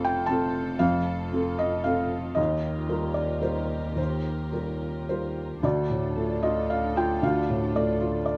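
A felt-muted upright piano leads this short, hopeful neoclassical passage, its soft, mellow tone sitting up front as it plays accompaniment in a rubato 3/4 at around 107 to 119 BPM. Beneath it, a dark chamber string section holds sustained chords, bowed sul tasto with light vibrato and a gentle attack, while a single double bass, also bowed sul tasto, adds an airy, close low line. The harmony moves from F to Ebadd9, giving the opening an intimate quality. At 5.6 seconds the music shifts to D minor, and a folk marimba with soft mallets enters in the background with woody, rustic arpeggios on its dry, round hardwood bars. The players sound as if they share one room, with light reverb keeping the sound close and unforced in this fragment of a longer piece.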